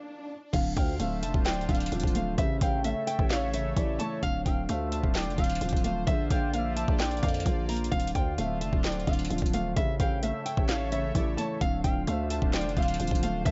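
Hard-hitting, eerie trap in D minor at 130 BPM with a half-time feel, this excerpt opens on a brief electronic swell over a felt-muted upright piano, dark and intimate with audible action noise, before the guitar, pad, bass and drums arrive at 0.5 seconds. A bright, fingerpicked nylon-string guitar carries the melody, finger squeaks and all, over a detuned sawtooth pad with chorus, and a smooth gliding lead slips in just after, sitting in the background with phaser, delay and vibrato, while the chords cycle through Dm7, A and Bbadd9. Up front, a trap kit of knocking kick, sharp snare, metallic hats, handclaps and crash plays alongside a growling, buzzy 808 bass, all set in a digital ambience with a dulled top end.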